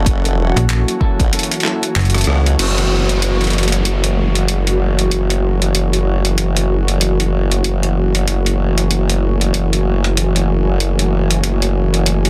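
A swung 95 BPM glitch hop groove in 4/4 drives this playful, gritty excerpt. A punchy kick and overdriven boom bap kit of hi-hat, rim click, handclaps and crash sit up front under an F#7#9 chord. A snappy FM slap bass with a metallic attack joins at 0.6 s over a wobbling, chorused sawtooth-and-sine formant bass. A slightly broken-up picked electric guitar plays stabs with dub echo until 2.4 s. A warbling, detuned analog pad and a cloudy, evolving granular pad pump underneath. After the band accent and kick dropout, a background downlifter enters at 2.6 s.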